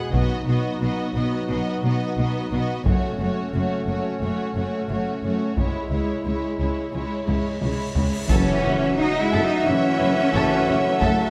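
A relentless, heroic stretch of epic orchestral film score, cut from a longer piece, opens with warm bowed violins carrying a smooth melody over a distant second violin line, while close, focused violas accompany and warm horns in the background hold chords. Rich cellos and double basses take the low end as a taiko ensemble struck with hard sticks drives the build-up, all set in moderate concert hall reverb. A drum fill from 7.3 seconds and a huge, dark cymbal swell from 7.4 seconds lead to an impact at 8.3 seconds, where very quiet soft-attack trombones, trumpet stabs, a mellow tuba and articulate calf-head timpani join.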